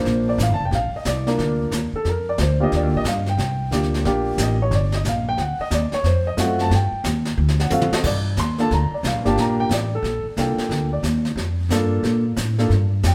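Moody and late-night, this jazz piano trio excerpt swings briskly as a warm concert grand, sitting up front with deep bass, solos over rootless minor-seventh and major-seventh voicings and altered dominant chords, supported by a woody pizzicato upright bass with steel strings and a brushed drum kit with dark cymbals and a punchy kick that plays a fill from 7.4 to 8.0 seconds, all captured live together in a moderate stone room.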